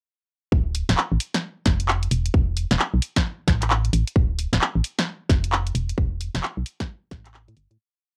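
This short home recording on cassette carries a light reverb, with the drums set in the close air of a small room. It is a moody, bouncy piece of UK garage in the two-step style, running at 132 BPM in 4/4 with a 63% swing on the sixteenths. An electronic kick drum and an organ-like FM bass open together at 0.5 seconds, the kick tight, tape-warm and sitting up front with a two-step pattern. A garage kit soon joins them with a cracking snare, handclaps and skipping, swung hats and rims. Underneath, the bass plays a skipping, syncopated line in the low register, its hollow, percussive notes attacking fast and decaying into a dark tone. The groove fades out from 5.4 seconds to the close at 7.8 seconds.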